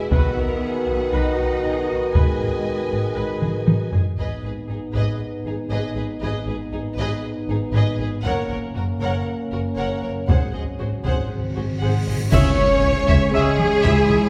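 A lush, reverberant hall sound frames this dramatic, dark excerpt of an epic orchestral film score in G# minor at 118 BPM, where expressive violins carry the melody over a second violin line, smooth violas, rich cellos and distant double basses, with dark French horns holding chords throughout and bright trombones joining at the start and again near the close. Hard-stick taiko drums drive the music, falling away after 5.2 seconds and returning at 8.3, while soft-mallet timpani enter at 10.3 seconds and a huge cymbal swell builds in the background. At 12.3 seconds the full orchestra lands on a C#m accent, with clash cymbals and bass drum, a trumpet stab on E5, a mellow, hollow flute line and a very quiet string section holding chords to the end.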